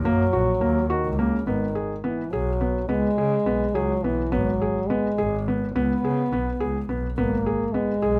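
Contemporary chamber music in an uneven five-eight meter, this restless, urgent fragment is cut from a longer piece and lasts just over 8 seconds. A felt-muted upright piano carries the arpeggios from 0.1 seconds, its soft, intimate tone touched by audible action noise from the thin felt. Beneath it, a single bowed double bass plays the bass line with a rich, focused sound and vibrato. A mellow French horn supplies a second line in a classical style, its roomy tone shaded with light vibrato. The close, detailed recording sits in light reverb, and the harmony moves through minor seventh chords, bare fifths and a closing minor add-nine chord.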